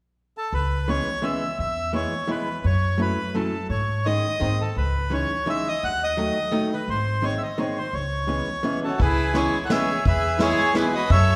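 Whirling and nostalgic, this musette waltz in C# minor swings at 170 BPM in 3/4, a passage cut from a longer piece. A reedy, dark bandoneon carries the melody up front over woody pizzicato upright bass and a clean, compressed hollow-body archtop guitar picking chords such as C#m7, F#m7 and G#sus4. From 8.8 s a focused, bowed violin with vibrato adds a second line, and at 9.0 s a vintage kit played with brushes enters in the background, while the ensemble rings in the reverb of a church or concert hall.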